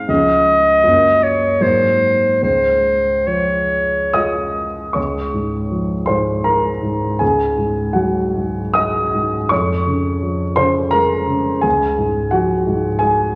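A dark, mellow grand piano opens this serene, tender romantic duo in Db major, joined almost at once by a bright, smooth-topped clarinet singing a short melody in its upper register. Both instruments sit up front in a wet recital hall reverb, with the clarinet playing in a classical style and carrying the tune over a vintage-toned piano accompaniment. The music moves in a rubato 3/4 between 66 and 88 BPM, tuned to A4 = 444 Hz, and its harmony drifts gently from Db through Gbmaj7 and Ab9 before settling back home. The clarinet falls silent at 4.6 seconds, and the piano carries on alone through a repeat of the opening section, passing through Ab5/Db and Db/F before resting on Db. The recording is a fragment cut from a longer piece and ends at 13.4 seconds.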